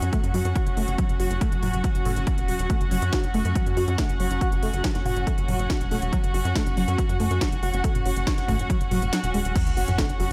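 Driving peak-time techno at 140 BPM, industrial in mood, this excerpt pairs an overdriven, heavy kick and a kit of cracking snare, smooth hats, crash and toms with a tight, punchy sawtooth sequencer bass pumping against the beat, a gritty, screaming synth lead with chorus and delay sitting in the background, distant bowed strings of reedy gut-string tone, and a very quiet swarming detuned drone, until the kick drops out at 9.1 seconds and a faint sub drop lands at 9.6 seconds.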